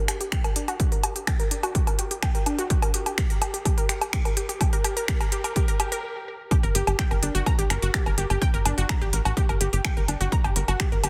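Melodic techno at 126 BPM in G harmonic minor, hypnotic and cinematic and cut from a longer piece, opens with a lush, detuned unison pluck playing sidechain-pumped arpeggios with delay under a filter sweep through the build-up, over up-front, tape-warm electronic drums (a heavy kick, finger snaps, a soft-clipped snare, and smooth hi-hats and woodblock pumping to the sidechain); a brief stop at 6.0 seconds gives way to a drop on Gm at 6.5 seconds, where a dark, punchy sawtooth sequencer bass enters at 6.6 seconds, the whole set in light digital reverb with a dense, heavily limited master.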